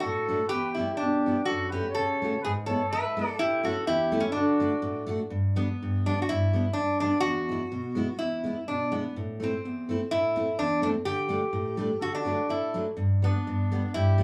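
Alpine folk in the manner of an alpine dance band, this bouncy, festive passage moves in a straight two-beat metre and is cut from a longer piece. A lap resonator guitar carries the melody up front, its metallic, nasal slide tone played with fingerpicks. Beside it, a full-bodied jumbo steel-string acoustic guitar supplies picked accompaniment, also close and warm. A clear trumpet in classical style adds a distant, roomy second line for the first 5.0 seconds, drops out as the music shifts into a new section, and returns at 12.0 seconds. The band sounds as if playing live together in a small room, with a moderate touch of reverb around them.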